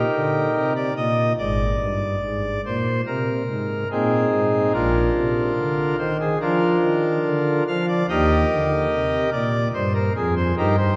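A nasal cornet stop sits up front in a wet church acoustic, its sound hanging in a long reverberation. This reverent, serene chorale-style passage for solo pipe organ, cut from a longer classical piece, moves at 72 BPM in 4/4 with a rubato feel and a romantic voicing, spanning Ab1 to F5 in Eb major. Over 11 seconds the harmony travels from Eb through Ab and Bb before settling back on Eb at 8.1 seconds.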